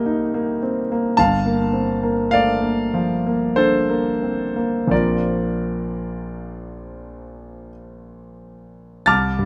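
Impressionist classical solo piano in a slow, rubato 3/4 at 42-53 BPM, this nocturnal, wistful fragment of a longer piece features an up-front concert grand with a clear, natural tone and deep bass spanning G1 to A6, moving through Cm7, Gm9 and Bbadd9 under light reverb across its 9.5 seconds.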